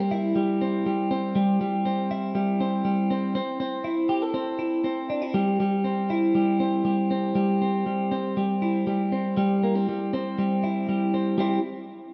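A bright, twangy twelve-string electric guitar plays alone and up front, clean, picked and compressed, moving through C, A minor and back to C in this youthful, nostalgic indie pop fragment at 120 BPM in C major, bathed in a lush hall reverb with a rough home-demo feel until it cuts off at 11.6 seconds.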